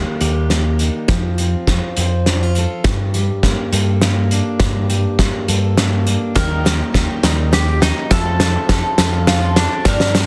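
A dense, heavily limited modern mix in a small room carries this wistful, bittersweet indie folk fragment in a straight 6/8, cut from a longer piece and building throughout over a drum fill and an Eb, F, G minor progression. A warm, full-bodied fingerpicked jumbo steel-string guitar with finger squeak sits over a dark, round, punchy picked electric bass, and a loose, up-front drum kit with a fat snare and punchy kick joins at 0.2 seconds in a pumping studio room. At 6.3 seconds a shimmering, octave-doubled twelve-string guitar enters in the background, and a moment later the arrangement fills out with round double-stringed mandolin arpeggios, a very quiet woody upright piano with audible action noise, crisp group handclaps and a faint jingly tambourine, while the steel-string guitar stops at 8.1 seconds.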